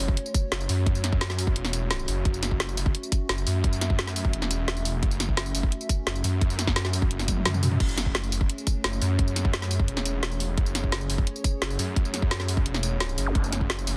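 A straight 4/4 pulse at 173 BPM drives this dark, aggressive excerpt of technical drum and bass in F# minor, with a tight, up-front electronic kick and a layered kit of woody snare, bright hats, tambourine, toms and crash, broken by a drum fill at 7.3 seconds. Beneath it, a thick detuned saw bass with chorus and overdrive pumps under sidechain compression, while a deep, moody analog pad with slow attack, long release, chorus and phaser holds mellow sustained chords on F#m. A brief electronic zap sounds in the background at 13.3 seconds, all within a dense, heavily limited modern master and digital ambience.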